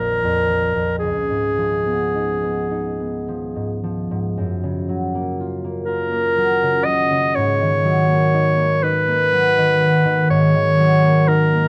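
A classical, impressionist duo for clarinet and harp, this dreamy, luminous passage is cut from a longer piece and moves in a slow, rubato 6/8 at around 35-41 BPM, counted in dotted quarters, in F# major. A bright solo clarinet carries the melody up front, singing in a classical style within a narrow span from G#4 to D#5. Beneath it, a mellow concert harp supplies the accompaniment, thumb-plucked and ringing, reaching from A#1 up to E#4 and sitting just behind the clarinet in level. The harmony drifts from A#5 and C#13 to F#maj7 at 4.4 seconds and G#m9 at 7.4 seconds. Light reverb and a dark, warm production wrap the two instruments in a soft, intimate glow across the full 11.7 seconds.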